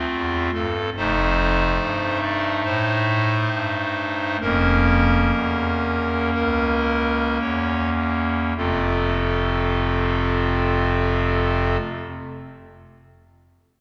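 A pipe organ on a hollow, up-front clarinet reed stop plays a serene, reverent chorale-style passage alone in a romantic voicing, its rubato pulse slowing through the opening 8.6 seconds as the harmony moves from F to F7 and Bbm/F before settling back on F, all bathed in wet church reverb, with the organ falling silent at 11.8 seconds in this fragment from a longer piece.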